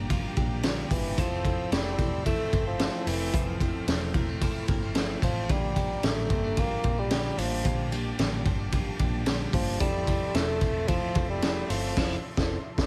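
Nostalgic and breezy, this jangly indie pop excerpt sets a mellow, lightly vibratoed bassoon melody entering at 0.9 seconds over a gritty, saturated garage drum kit up front, a round, foam-muted electric bass, a twangy twelve-string electric guitar with spring reverb and tape echo playing arpeggios, a full-bodied fingerpicked acoustic guitar and a smooth detuned analog pad with chorus, moving between Bb6 and Fmaj7 before a band accent at 12.0 seconds.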